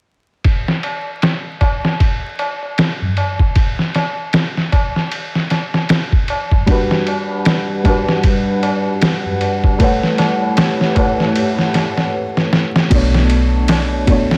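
Trip hop at 77 BPM in B minor, this hypnotic, dark excerpt from a longer piece opens at 0.4 seconds with a gritty, pitched-down sampler-style drum kit sitting up front, its thumpy kick, medium-tuned snare, ride and crash all softened by low-pass filtering and set in studio reverb, with a swung sixteenth-note feel. A low-tuned tabla with a short ring plays underneath from a distant, large-room space. At 6.7 seconds a worn, woody upright piano enters on a Gmaj7 chord, slightly detuned and mellow, its long sustain colored by tremolo and tape echo as the harmony moves to A13. A warbling, nostalgic pad built from square and triangle tones with a sub octave and slow attack drifts in alongside it, lo-fi and chorused in its own reverb. After a drum fill, a round, foam-muted fingered electric bass arrives at 12.9 seconds on a Bm9 chord, deep and dubby, while vinyl crackle and light reverb lend the whole recording a vintage haze.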